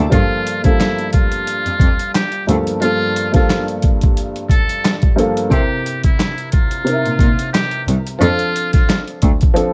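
Vinyl crackle and a small room ambience frame this short, gritty boom-bap hip-hop excerpt, which carries a dark mood over a light swing. A sampler-style drum kit sits up front, pitched down and compressed, with a thumpy kick, a medium-tuned snare, handclaps and hi-hat, all given a tape-warm character. A woody upright piano, also up front, plays mellow accompaniment with short sustain and audible action noise, filtered at both ends for a vintage, intimate feel. A single bowed cello carries the bass in a reedy gut-string tone with light vibrato, while a trumpet with a metal mute takes the jazz-style solo melody, buzzy and thin, its soft-attack notes scooped and shaded with vibrato. The harmony moves from Gm9 to C7 at 5.5 seconds and settles on F6 at 8.2 seconds before the excerpt ends.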